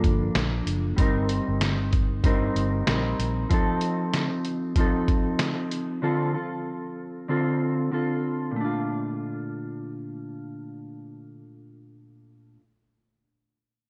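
Indie pop with a bedroom-pop haze, this sunny, dreamy excerpt moves at 95 BPM with a swung 16th feel in Bb major, as a mellow, dark, up-front electric guitar drenched in lush chorus and vibrato carries the chords through to 12.6 s, a reedy, slightly out-of-tune electric piano flickers in the background only until 1.0 s, a round, foam-muted vintage bass adds punch until 3.4 s, and a gritty, pitched-down sampler-style trip hop kit with a thumpy kick drives things until 5.9 s, all under light reverb and the warbly pitch drift of worn cassette tape as Gm7, Cm7/G, F7 and Dm7 give way to Bbmaj7.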